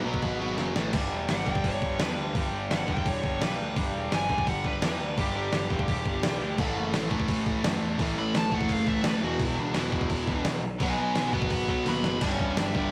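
A short cut of rowdy, energetic punk rock opens on a bright distorted guitar riff, a very quiet double-tracked fuzz guitar, a dark, sludgy overdriven guitar in the background and a punchy fuzz bass, with a gritty sampler-style drum kit pushing up front with a thumpy kick, fat snare, hi-hat and crash. After a quick drum fill, a smooth overdriven lead guitar takes a solo from 1.3 seconds. The sludgy guitar drops out and returns at 6.6 seconds, and another fill arrives at 11.9 seconds, all captured as a rough rehearsal-room recording with light reverb.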